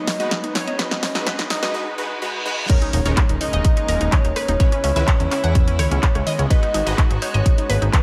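Expansive and driving, this 126 BPM progressive house excerpt in G# minor opens with a build-up in which a punchy up-front kick and a house kit of snare, bright hats, claps, rim clicks and crash enter at 0.1 seconds and a filter sweep runs over a glassy, crystalline wavetable pluck arpeggio beside a very quiet riser and reverse cymbal. It then drops at 2.7 seconds with an impact, while a round, dark octave-layered synth lead carries the chorused, phased melody over a pure, very quiet synth bell, reedy gut-string chamber strings, airy supersaw stabs and dub echo on lead, pluck and stabs. A fat, nasal, saturated analog bass enters at 2.9 seconds and tape-toned congas at 3.2 seconds, with sidechain pumping on the lead, strings, pluck, stabs and bass.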